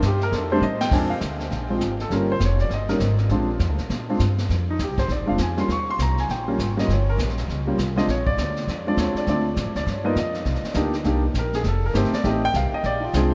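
A polished, up-front grand piano carries the melody and solos through this 13.3-second jazz piano trio excerpt, ranging from F3 to Db6 over a Bb mixolydian progression that moves through Bb7, Eb7, Fm7 and a turnaround of Dm7, G7(#5, no3), Cm7 and F7. The mood is sophisticated and relaxed, with a brisk 201 BPM swing in 4/4. Pizzicato upright bass with a woody, dark tone holds down the low end from F1 to Bb2. A distant, roomy brush kit sits further back, with dark cymbals, a medium-tuned snare, a boomy kick and a rolled-off top, and it drops a fill at 0.6 seconds. A huge ambient reverb with a 7.4-second decay places the trio in a vast, echoing space.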